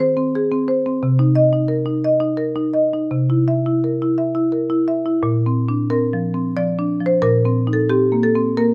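Contemporary classical music for solo marimba, this short passage cut from a longer piece has a playful, flowing mood in three-four time, its beats uneven and its pulse stretching freely with rubato. The marimba, struck with medium hard mallets on padauk bars, carries everything alone from 0.0 to 8.7 seconds, ranging from Bb2 up to E5. Its sound is woody and dark yet smooth, with a percussive edge to each note that sits up front. The harmony moves from Ab/Eb through Cm7 and C7 before a second section at 5.2 seconds shifts to Bbadd9 and settles on Cm7/Bb. Close, detailed microphones and very little reverb keep the instrument dry and intimate.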